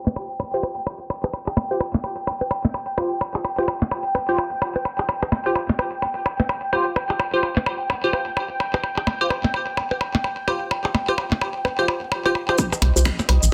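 A dense, heavily limited modern master with a low-pass sheen and a wet studio reverb frames this hypnotic, quirky minimal techno fragment, cut from a longer piece and moving at 128 BPM in 4/4 with a 60% swing on the 16ths. For most of its length a bubbling, detuned sawtooth texture with random filter steps, chorus and its own reverb pumps against a sidechain, while up-front electronic percussion blips scatter through a digital delay. A crisp, bright wavetable chord stab with a fast filter pluck and decaying tail rings out over them, also echoing through digital delay. A filter sweep runs until 12.6 seconds, when a punchy, tape-warm electronic kick arrives alongside close, grainy maracas. Just after, at 12.8 seconds, a rubbery, hollow square bass bounces in low and up front with sidechain pumping, joined by a house drum kit of finger snaps and hi-hat re-recorded in a small room, with the snaps softly clipped.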